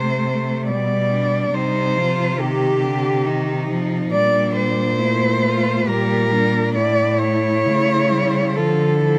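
Classical and solemn, this elegiac fragment for four bowed cellos moves in a rubato 3/4 at 69 BPM: a warm, expressive lead sings the melody up front with vibrato and portamento over a rich second line, a smooth, even accompaniment and a bass voice, all four playing throughout and shading chords such as Cm, Gm/Bb and A before settling on Dm at 8.6 seconds, captured by close, detailed microphones in light reverb.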